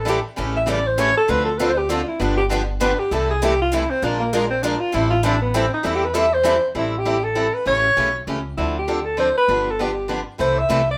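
A moderate studio reverb lends this short cut from a longer acoustic string swing piece a roomy sound, with a swinging, bittersweet mood and a lilting three-beat swung feel. A breathy alto saxophone carries the melody in a mellow, subtoned jazz style with light vibrato, sitting up front yet with a slightly distant air, and it solos from the start until 6.8 seconds. Underneath, an upright bass gives woody, thumpy pizzicato support on gut strings. Two picked steel-string guitars with a boxy parlour character fill out the accompaniment: one sits up front with audible finger squeak, while a brighter one stays in the background, drops out at 6.6 seconds and returns briefly at 10.4 seconds. The harmony cycles through A7, Dm7, G7 and C6, passing through Bb7 and Am7 before the progression comes around again in the second half.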